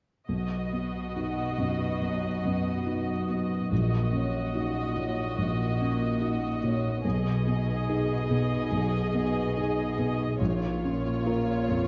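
A felt-muted upright piano sits up front in this hopeful, tender cinematic score, its soft, intimate tone carrying the accompaniment with audible action noise over a rubato 71 BPM pulse in 4/4. Behind it, a con sordino violin section adds a veiled, vibrato-laden second line, a bright concert harp rings out thumb-plucked arpeggios, and a muted symphonic cello section holds a soft-attack bass in the background. The chords move from B through F#6/A# and G#m/B to A#m in this fragment of a longer piece, all set in a dark, moderately reverberant scoring-stage sound.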